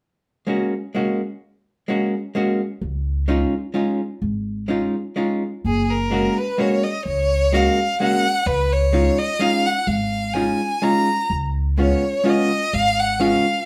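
A rich, vibrato-laden bowed violin carries the melody from 5.7 s in this charming, whirling musette waltz with a gentle swing, set over a dark, clean, hollow-body archtop guitar comping from 0.5 s and a woody, thumpy pizzicato upright bass that joins at 2.8 s, captured in a reverberant studio heard from further back, in this short cut from a longer piece.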